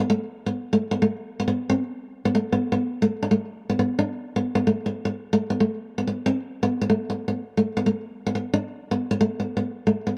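Highlife in a straight 12/8, this short, danceable excerpt is cut from a longer piece and carries a warm mood. A lone nylon-string guitar plays throughout, from 0.0 to 10.1 seconds, sitting up front in the mix. Its acoustic tone is dark and classical, fingerpicked within a compact middle register running from A3 to D4. A moderate spring reverb gives the guitar a soft halo and a sense of space around each note. The result is intimate and gently buoyant, keeping the dance feel of the style with just one instrument.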